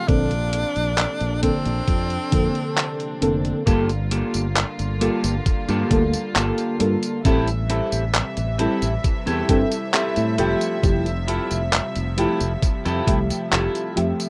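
Vaporwave at a straight, unhurried 67 BPM in 4/4, dreamy and faded on a cassette demo mix with light reverb, where an edgy, vibrato-laden tenor saxophone with tape echo states a brief melody until 3.2 s, a round, warbling FM electric piano with chorus and echo and floating sul tasto strings hold Bbmaj9, Gm9, Am7 and Fmaj9 harmonies, an up-front fretless bass with tube saturation anchors the low end, a gritty, detuned 8-bit drum machine with handclaps, hi-hat and tambourine rides over a thumpy electronic kick that drops out from 2.8 to 3.7 s, and a dark, clean semi-hollow guitar enters at 3.7 s with a riff and a fill.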